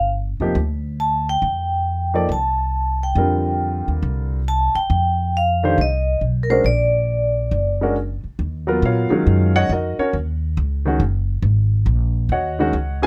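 A ringing, metallic vibraphone struck with medium hard mallets carries the melody in this hypnotic, cool modal jazz passage, its smooth tone shaded by a slow motor vibrato until it falls away at 7.9 seconds. The tempo is 138 BPM in 4/4, with a swing feel on the eighth notes. A pizzicato upright bass with steel strings sounds woody and thumpy, giving a dark low end from the very start. A warm grand piano, present and with long sustain, joins at 0.4 seconds to accompany, moving through harmonies such as Fsus4 and Bbaug. The music settles into Eb minor at 8.4 seconds on an Ebm9 chord, leaving bass and piano to carry this clip from a longer piece to its close. Close, detailed microphones and very little reverb keep each instrument up front.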